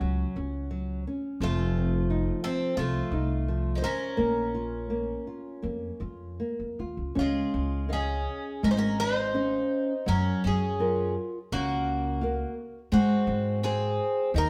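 Passionate and longing, this fado-style ballad moves with a rubato feel at 76-90 BPM, opening in Bb minor before turning to Db major at 7.2 s in a short cut from a longer piece. A mellow, metallic Greek bouzouki carries the melody over a shimmering twelve-string acoustic guitar playing a picked second line, while a dark, woody nylon-string guitar with old strings fingerpicks the accompaniment up front beside a thumpy pizzicato upright bass. The band plays live together in a moderate stone room, whose reverb lends the ensemble a resonant, close-knit glow.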